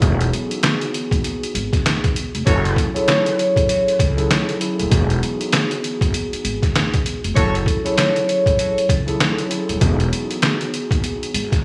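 Gritty, pitched-down sampler drums with a thumpy kick sit up front beside woody pizzicato upright bass and a mellow tine electric piano with tape echo, setting a reflective boom-bap hip-hop groove at 98 BPM with a swung 16th feel over Emaj9 and F#m7. At 2.5 s a dark, ringing vibraphone with slow motor vibrato carries the melody until 9.2 s, while a tight horn section adds brief background stabs at 2.5 and 7.4 s, all in an echo-heavy mix in this fragment of a longer piece.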